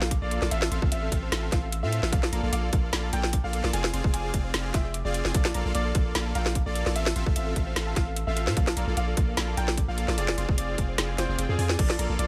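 A dry mix carries this bright, lush future bass drop at 149 BPM in a half-time 4/4 feel, cycling through Bbmaj7, Fmaj7/A and Fm6 in Bb lydian. A clear grand piano sings the melody over a soft, detuned supersaw riff and a round, tine-like FM pluck playing mellow arpeggios in the background, while the piano, pluck, supersaw and a deep, sine-based 808 bass all pump against the sidechain, with dub echo trailing the piano and pluck. A tape-warm trap kit with a woody snare and metallic hats drives alongside a hard-clipped electronic kick, which drops out from 11.0 to 11.8 seconds near the end of this cut from a longer piece.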